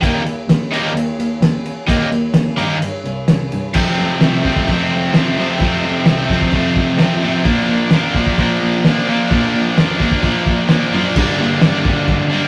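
A crunchy, bright, double-tracked electric guitar sits up front with an overdriven, picked riff in this gritty, swaggering garage rock passage, moving through Eb, F, Bb and Gm in a straight 4/4. Underneath, a single bowed cello plays the bass line with a woody, sul tasto tone, vibrato and tube saturation, close and dark. A cloth-damped, thuddy, muffled acoustic kit with a fat snare, tight kick, dark cymbals and a rolled-off top adds lo-fi saturation and ends at 12.2 s, all caught in a rough rehearsal-room recording with moderate reverb.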